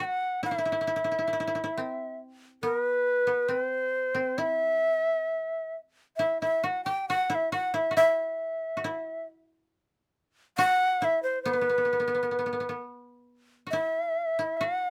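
Close, detailed microphones and a light reverb give this short cut from a longer piece of Japanese chamber music an intimate, solitary feel. A bright, airy bamboo shakuhachi carries the melody up front, its crisp attack and breathy chiff clearly audible, with vibrato colouring its sound. Beneath it, a koto played with fingerpicks adds a quieter second line in a lower register, its tone mellow, dry and woody. The music moves at a rubato 68 BPM in 2/4, tuned to A4 = 435 Hz, and both instruments sound throughout. A first passage gives way to a new section at 6.2 seconds, sustaining the meditative mood to the close at 14.9 seconds.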